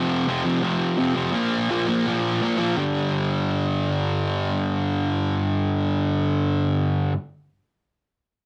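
This rock fragment, cut from a longer piece, has a menacing, gritty mood and a straight 4/4 pulse. A single electric fuzz guitar carries everything from 0.0 to 7.1 seconds, picked in a low register with a bright, distorted edge. Double-tracked and placed up front, it moves through power chords on F, then Bb at 1.3 seconds, then G at 2.8 seconds, where a second section begins. A light reverb and the character of a home cassette recording give the sound a rough, homemade grain.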